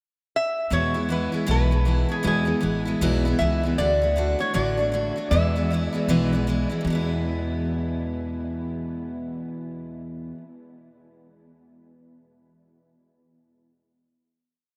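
Drenched in a huge, echoing reverb that makes the room sound vast, this short, easygoing honky-tonk and classic country piece has a swung, nostalgic feel. A metallic, nasal lap resonator guitar, played with fingerpicks and slide, states call-phrase motifs from 0.4 s to 6.4 s over a bright, full-bodied dreadnought strumming eighths in open chord shapes up front, finger squeaks included, while a woody, thumpy gut-string upright bass plays a two-beat root-and-fifth line with walk-ups. The harmony moves from E to D and back to E before the acoustic guitar and upright bass ring out a final chord from 6.9 s.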